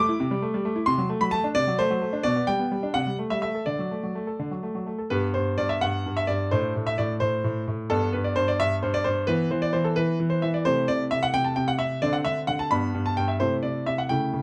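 A clear, smooth grand piano plays alone from the first moment in this graceful, elegant classical-period sonatina, moving in 6/8 with rubato. Its vintage tone has a short sustain and sits up front, captured by close, detailed microphones with light reverb, spanning from the low bass to the upper treble. After an opening phrase, a new section begins at 5.1 seconds and carries on until the fragment, taken from a longer piece, ends at 14.4 seconds.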